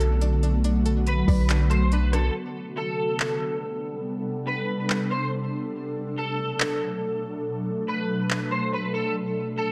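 Atmospheric cloud-rap in a half-time feel at 141 BPM, this melancholic, spacious excerpt sits in A dorian, moving from Bm7 to Am11 and back. An ethereal, airy pad holds sustained chords throughout, its detuned, mellow tone treated with ensemble chorus, phaser, reverb and sidechain pumping, while an electric guitar at the edge of break-up carries a twangy, picked melody through chorus and delay. For the opening 2.3 seconds, a deep, sine-like 808-style bass sits up front and a bright, warbling resonator pluck spins arpeggios in the background with chorus, phaser and delay, before both stop as a break begins. A smooth R&B kit of soft kick, smooth hi-hat, handclaps and rim click, tape-warm and re-recorded in a large room, plays until 8.4 s. The dark production is bathed in a lush hall reverb with a 1.9-second decay.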